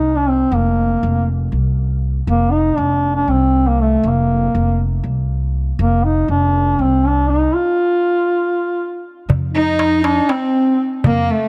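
A mellow, distant-sounding duduk carries a folk-style melody with vibrato over a woody pizzicato upright bass in this festive Turkish makam ensemble piece, moving at 239 BPM in eighths in 7/8 and set in F makam hicaz. After a break from 7.6 to 9.3 seconds, a crisp, high metal-shell darbuka enters, and a rich, smooth bowed cello joins at 9.5 seconds with a second line of its own. The sound is dry and close in a 1970s studio style, with light reverb, and the excerpt is cut from a longer piece.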